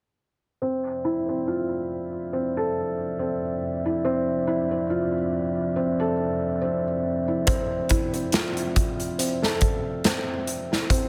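This brooding, cinematic trip hop fragment, cut from a longer piece, opens at 0.6 s on a Dm9 chord. A dark analog pad holds sustained chords with a slow attack, its detuned, wave-folded tone thickened by chorus and a sub octave. Alongside it, a felt-muted upright piano plays arpeggios with a soft, intimate tone, with audible action noise and thick felt dulling each note. The piano carries vintage 12-bit sampler grit, a low-pass filter and tape echo, and a filter sweep runs across it for the whole passage. At 7.5 s a big rock drum kit arrives at 70 BPM with a 16th-note swing, its punchy kick, medium-tuned snare and hi-hat recorded acoustic in a big room and placed up front. Light reverb surrounds the moody D minor atmosphere.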